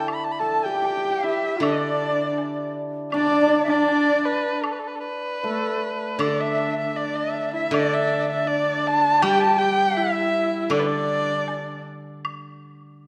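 A dark, woody erhu sings the melody up front with vibrato and portamento, joined at once by a shimmering hammered dulcimer, a husky horsehead fiddle and a pure, buzzing bamboo dizi in the background, in this graceful, pastoral fragment of traditional Chinese chamber music at 79 BPM in a rubato 2/4. A silvery steel-string zither rings beneath them, pausing at 3.9 seconds and returning at 6.2 seconds as the second section begins. A close woodblock ticks in the background, and the ensemble sits in a moderate concert-hall reverb.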